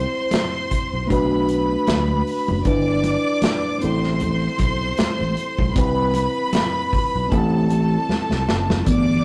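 A close, bowed violin section with smooth vibrato opens this silky, cinematic slice of lush 1970s-style soul at 77 BPM in A dorian, sitting up front over a mellow tine electric piano heard through its built-in speakers and a punchy fingered electric bass, as the harmony moves through Cmaj7, Bm7, G6 and Am7. At 0.3 seconds a dark, small-room drum kit with a tight kick, medium-tuned snare, hi-hat and a rolled-off top joins with a lightly swung sixteenth feel, alongside very quiet, bright congas played with soft hands, and the kit takes a fill from 8.1 seconds. A stone room reverb and tube saturation give the recording a rough rehearsal-room character.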